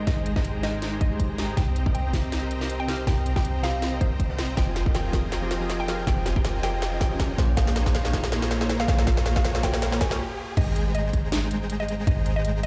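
Heard through a big sound system in a bare room, with large studio reverb and a faint mains hum, this playful, bright future bass clip in Ab major runs at 160 BPM with a lightly swung half-time feel, building until a break at 10.2 s and a drop at 10.6 s. A woody, round mallet-like pluck carries the melody over glassy digital keys treated with chorus and phaser, while a huge, detuned supersaw riff with cassette-tape colour and a low-pass filter rides above a deep, boomy 808-style bass, and these four parts all pump against the sidechain. A hard-clipped electronic kick sits up front beside a trap kit of sharp snare, crisp hats and crash cymbal, with a drum fill running through the build and a riser in the background from 4.1 s.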